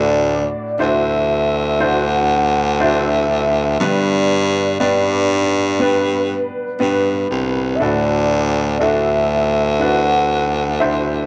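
An up-front, bright baritone saxophone carries the bass line with vibrato and scooped notes beneath a velvety, detuned synth lead with chorus and portamento and a woody upright piano whose action noise is audible, together forming a heartfelt, emotional pop ballad at 60 BPM in 4/4 that moves from Dadd9 to G and back to Dadd9 in a small room with moderate echo-chamber reverb over this 11.3-second excerpt.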